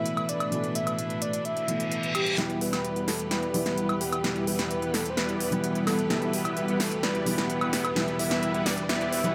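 A straight 4/4 pulse at 129 BPM drives this powerful, euphoric festival progressive house excerpt in E minor, where a punchy, up-front big-room drum kit with crisp hats and woodblock joins a breathy flute-like synth lead bathed in chorus and dub echo, a mellow felt-muted upright piano and biting symphonic strings, before a very quiet reverse cymbal and riser arrive at 1.6 s and huge detuned supersaw chords with a cassette-tape tint enter at 2.4 s under a filter sweep, as a drum fill and build-up run to 9.3 s inside a lush hall reverb.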